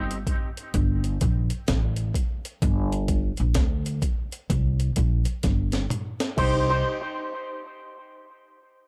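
This short excerpt from a longer dub reggae piece has a dry, echo-heavy sound with little reverb and audible lossy compression artefacts. The mood is heavy and meditative, moving at 64 BPM in 4/4 with a swung sixteenth-note feel in C dorian. It opens as a break, with a woody, growly pizzicato upright bass up front in a low register and a gritty, compressed sampler-style breakbeat kit, pitched up, built on a thumpy kick, a medium-tuned snare, hi-hat, crash cymbal and toms. The harmony begins unaccompanied by chords, settles on G minor at 2.6 seconds, and a drum fill from 5.4 seconds leads into the next section. At 6.4 seconds the chord turns to C minor and a bright, twangy electric guitar with an envelope filter adds a brief clean, picked figure, coloured by ensemble chorus and tape echo.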